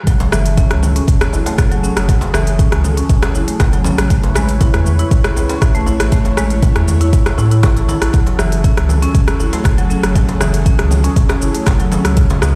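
An up-front electronic kick drum, deep and tape-warm, anchors this earthy, hypnotic afro house excerpt at 119 BPM in F# minor, cut from a longer piece and opening straight into the drop. A woody marimba with rosewood bars plays arpeggios from B2 to A4 with a vintage, band-limited character, treated with delay and sidechain pumping. Beneath it a round analog bass, dark and sine-like with a filter sweep, enters at 0.3 s and pumps alongside a detuned sawtooth pad whose soft-attack chords carry chorus and a moving notch. The afro-pop drum kit brings smooth hats, rim click, shaker and toms, while a djembe with metal rattles sits in the background and a very quiet sub drop marks the impact from 0.1 to 2.1 s. The chords move from F#m to A at 4.1 s and back to F#m at 8.1 s, all heard as if played on a big sound system in a bare stone room.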